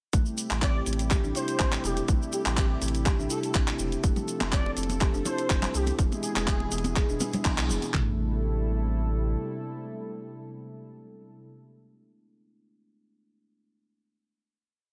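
A four-on-the-floor kick with a punchy edge drives this afro house piece at 123 BPM in A minor. Its lightly swung 4/4 groove is filled out by programmed closed hats, layered claps, floor toms and a grainy, bright cabasa playing hand-played sixteenths. Congas join at 4.2 seconds, close and dry, with hard hands and interlocking mute, high and low strokes. Beneath them, a deep, round sine sub bass holds a dotted rhythm, while a woody kalimba repeats a 16-step arpeggio sequence through tape echo; both pump against the sidechain along with a detuned sawtooth pad that carries the Am7, F and E chords. Above, a mellow, expressive portamento lead with vibrato and ensemble chorus sings short answering phrases through tape echo, giving the driving groove a spiritual air. After a band accent late in the drop, the pad sustains a final Am7 until 11.5 seconds, with the sub bass lingering beneath it until 9.4 seconds. 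The drums were re-recorded in a small room, and light reverb surrounds the mix.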